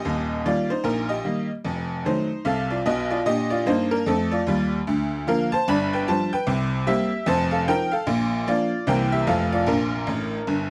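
Stride piano jazz in Bb major, this short cut from a longer piece bounces along at 150 BPM in 4/4 with a lilting swing and a playful, exuberant mood. A lone tack piano carries everything from 0.0 to 10.7 seconds, its sound metallic, jangly and percussive, with a vintage, boxy character placed up front. The part spans a broad range, from Eb1 down low to B5 up high. The harmony moves briskly from Eb through F7b9 to Bb, then runs a chain of dominant chords, G7, C7 and F7, before settling back on Bb. A honky-tonk piano fill at 10.1 seconds closes out the passage. A moderate club reverb gives the piano the feel of a small, lively room.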